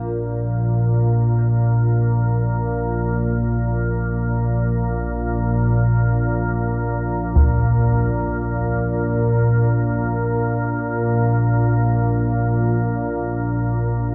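A vast, echoing cathedral reverb surrounds this desolate, cavernous dark ambient drone in free time, where a detuned, ring-modulated organ-like drone with ensemble chorus sits up front on Bb1 to Bb2 for the full 14.1 seconds, a very quiet, eerie, inharmonic FM synth bell plays arpeggios on Bb4 until 2.9 seconds, and a close, dry solo taiko drum struck with heavy sticks sounds very quietly at 7.4 seconds.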